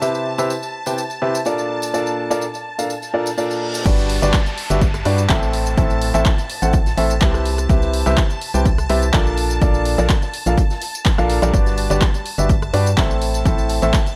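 A straight groove drives this euphoric, feel-good piano house excerpt, opening with an overdriven analog drum machine that plays crash, handclaps, hi-hat, rim click and tambourine in a small room, alongside a very quiet, close acoustic tambourine. A clear baby grand piano sits up front with a riff touched by digital delay and sidechain pumping, while a shimmering, vintage string machine holds bright, chorused violin chords that also pump, moving through Cmaj7, Bbmaj7, Gmaj7 and Am. An electronic reverse cymbal and downlifter sweep in the background from 3.2 seconds to lead into the drop at 3.9 seconds. There, a dry, punchy electronic kick lands up front with overdrive, and a dark, hollow, organ-like FM bass with a fast, decaying attack joins the pumping pulse. A very quiet acoustic jazz kit adds hi-hat and a medium-tuned snare beneath, and the whole mix stays fairly dry and loud.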